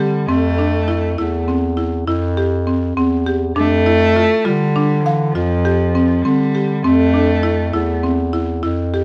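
Close, detailed microphones and light reverb give this restless, shimmering excerpt of contemporary chamber music an intimate clarity as it moves through 11/8 over Am7, G7sus4/F and back to Am. A rich, bowed cello with vibrato carries the melody up front until 8.0 s, while a buzzing, woody marimba with medium mallets ripples through dark arpeggios. Beneath them, a mellow bass clarinet plays the bass line in a smooth classical style until the close at 9.0 s.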